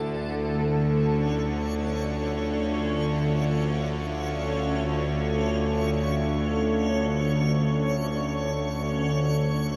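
A string-like, nasal drone sits up front in the low register, its detuned sawtooth tone carrying a tense, evolving character with vibrato and a noise layer woven into the sound. Above it, a deep, moody pad holds sustained chords in the middle range, thickened by a sub octave, chorus and shimmer reverb. A reversed, granular texture of bright triangle tones hovers in that same register, adding a dreamy, detuned glimmer with soft attacks and long releases. This cavernous, ominous dark ambient piece dwells on a single minor chord until the harmony moves at 9.1 seconds. The mix is soaked in a lush hall reverb, cut from a longer piece.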